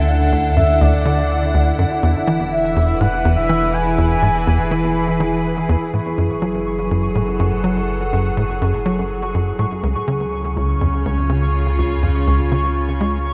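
A straight 4/4 pulse from a tight, punchy sequencer bass riff, nasal and saturated with analog chorus, tape echo and a filter sweep through the first 5.9 seconds, drives this cosmic, mysterious stretch of ambient space music, where a deep sine sub bass sits beneath a bright, detuned wavetable pad of morphing sustained chords, a horn-like synth lead with phaser, lush chorus, vintage sampler grit and tape echo sings a short melody until 5.7 seconds, and a faint, pulsing gated texture enters high at 5.9 seconds, the piece bathed in a huge, wet reverb and cassette tape character.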